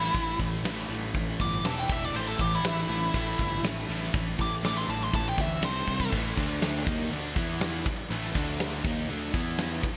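A straight 4/4 pulse at 121 BPM drives this aggressive hard rock passage in A minor, cut from a longer piece. A huge arena drum kit sits up front from 0.1 seconds, its punchy kick, fat snare and bright crash cymbals bathed in gated reverb, with a drum fill at 5.9 seconds. Up front over it, a nasal lead guitar with a parked wah plays a dark, overdriven solo, coloured by digital delay, from the start until 6.1 seconds. Beneath, three picked guitars play riffs throughout: a very quiet overdriven one with a warm tone, a very quiet sludgy one, and a tight, double-tracked distorted guitar in the background. A fuzz picked electric bass, punchy and overdriven, anchors the low end. After 6.1 seconds the chords cycle through A5, D5, Bbadd11 and E5, all set in light small-room ambience with a bright 1980s-style digital sheen.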